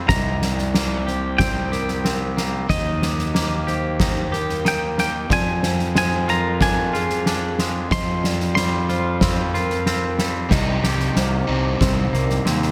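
A straight 4/4 pulse at 92 BPM drives this brooding, cathartic post-rock passage in C minor, cut from a longer piece. Up front, a soft-mallet drum kit with a boomy kick, fat snare and dark cymbals plays from 0.1 seconds, alongside a fuzz-drenched fingered electric bass that plays low notes under the harmony. A clean, picked electric guitar with slapback echo rolls out arpeggios, while a second twangy, compressed and scooped guitar carries the high melody until 9.8 seconds, also with slapback echo. Farther back, a ringing vibraphone played with soft mallets adds airy, mellow arpeggios with a medium motor vibrato. The chords move from Cm7 through Eb, Ddim/F and Fsus2 before returning to Cm7 at 10.5 seconds, where an overdriven semi-hollow guitar steps forward with a picked riff, all set in a light, small-room reverb.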